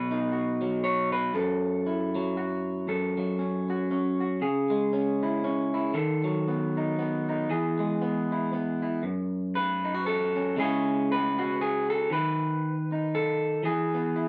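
A twangy, slightly broken-up electric guitar played through a small old amp sits up front in light reverb and carries this haunting, reflective folk piece alone, picked in a swung 3/4 at 117 BPM in F# dorian, moving through chords such as F#m, C#m, B7/D# and E around a brief chordless passage near 12.1 seconds, in a short cut from a longer work.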